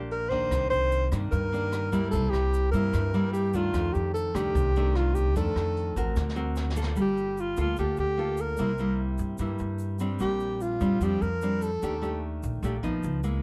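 Bossa nova in 4/4 with a straight feel, intimate and smooth, heard as a short portion cut from a longer piece. A breathy alto saxophone carries the melody up front, close-miked, with a whispered subtone, soft attacks, scooped notes and vibrato. A fingerpicked nylon-string guitar, full-bodied and classical in tone, shares the foreground with the saxophone, and a pizzicato upright bass on gut strings adds a woody, thumpy low end. A distant, roomy brush drum kit, with a boomy kick and rolled-off top, plays hi-hat, rim click and snare until about 6.9 seconds, closing its stretch with a fill from 6.2 seconds. A grainy, bright egg shaker sits close and dry in the background from 0.5 seconds, while the chords move through rich jazz colours such as Cm9, F13, D7alt and Ebmaj9#11 under light reverb and a dark production.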